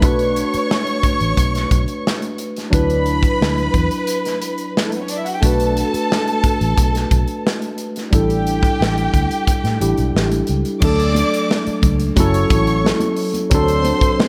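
A steady, straight 4/4 groove from a modern studio drum kit drives this lush 1970s-style soul excerpt from the first beat, its punchy kick, medium-tuned snare, hi-hat and bright crash cymbals sitting up front in a pumping room sound. Underneath, a vintage foam-muted electric bass plays fingered lines that are dark, round and amped, stopping at 13.9 seconds. A barky tine electric piano carries the accompaniment, lightly overdriven through a combo amp with a phaser, bright and forward in the mix. Above it, a studio violin section bows an expressive second line with vibrato and a slapback echo, giving the romantic mood its lush, ensemble sweep. The harmony moves through Bm7, D69 and A7sus4 before shifting to Dmaj7, F#m7 and D7 at 10.8 seconds, where high-tuned congas with a thick skin enter very quietly under soft hands. Light reverb wraps the whole passage, which is cut from a longer piece.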